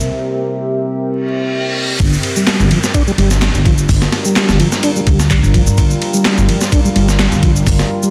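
A gritty, thumpy sampler-style breakbeat kit with up-front snare and ride drops in at 2.0 seconds to drive this raw, energetic 127 BPM breakbeat cut in G dorian, riding over a woody pizzicato upright bass, tape-warm electronic shaker and handclaps, a deep, moody pad with chorus, 12-bit sampler grit and sidechain pumping, a reverse cymbal and downlifter building toward the drop, and a mellow, flute-like tonewheel organ riff with slow rotary speaker and digital delay entering at 2.4 seconds, all under a dense, heavily limited master dusted with vinyl crackle.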